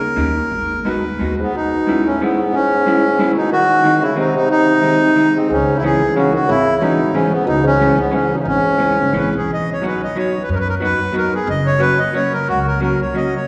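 Bathed in the long, wet reverb of a church, this nostalgic, bittersweet musette waltz at 181 BPM in 3/4 sways with a lilting swing and rubato as a reedy, close-miked single-reed accordion carries the melody up front over dark, clean picked chords from a vintage hollow-body electric jazz guitar, while a mellow, softly vibrato-tinged bassoon adds a classical-style second line from 1.4 s, a woody pizzicato upright bass returns at 5.5 s, and the harmony moves from C# minor to B major at 9.5 s in this fragment of a longer piece.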